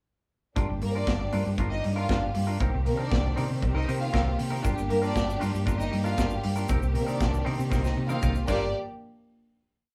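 A four-on-the-floor disco beat drives this short, complete piece at 118 BPM in 4/4, with open hats on the off-beats, a punchy kick and a medium-tuned snare from an acoustic studio kit that sounds mid-forward with a rolled-off top. Sultry and driving in G minor, the groove alternates between Gm7 and Cm7. Up front, a dark, round hollow-body bass plays an octave disco line with slides, while a clean, compressed electric guitar chops out sixteenth notes. A lush string section holds a clear, even pad, and a focused violin section bowed with vibrato adds short riffs on top. A grainy egg shaker joins in the background with sixteenths at 4.6 seconds, a drum fill arrives at 7.7 seconds, and the band closes on a final hit at 8.7 seconds, all set in a snug, live-sounding small room.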